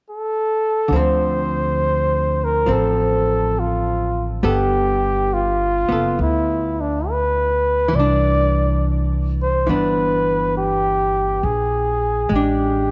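A bucket-muted trumpet stands out most, carrying the melody up front with a veiled, dark tone, light vibrato and a slapback echo that trails each phrase. It sounds alone at 0.1 seconds before archtop guitar and upright bass enter together at 0.9 seconds. This wistful, intimate jazz ballad moves at an unhurried swing in four, cut from a longer piece. The hollow-body electric guitar supplies clean, picked, compressed accompaniment with a shadowy edge. Beneath it, the pizzicato upright bass sits forward with a woody, thumpy gut-string sound. Light reverb gives the trio a close, intimate feel as the harmony moves from Dm7 through G9 and Cmaj9 to Bb7.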